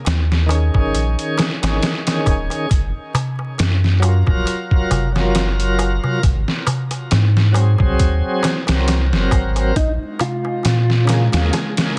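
Hypnotic and dark, this trip hop excerpt moves at 68 BPM with a loose sixteenth-note swing, built on a round, deep analog bass sitting up front and a gritty, pitched-down sampler-style kit with a thumpy kick. A crisp, close darbuka with a metal shell adds dry hand percussion, while a bright tonewheel organ, shouting and lightly overdriven through a slow rotary speaker, tremolo and tape echo, carries the accompaniment over chords moving from Eb7sus4 through Gbmaj7 and Ab7 to Bbm7. At 9.8 seconds a clean, fingered electric guitar enters with a brief dub-echoed melody, joined by a warbling, lo-fi pad in the background, all wrapped in a dense, heavily limited master with vinyl crackle.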